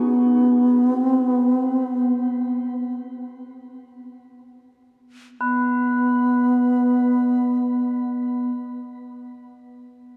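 World meditative music, this calm and spacious fragment of a longer piece floats in free time. A bass flute carries the melody from the opening, its pure, reedy tone sitting up front with vibrato, tongued notes and lifted highs. At 5.4 seconds tubular bells join as a soft texture behind it, their metallic ring solemn yet mellow, struck with a padded hammer and airy in character. Both instruments are bathed in shimmer reverb. The whole performance sits inside a vast, echoing cathedral space whose long, wet tail lingers after the flute and bells fall silent at 8.5 seconds.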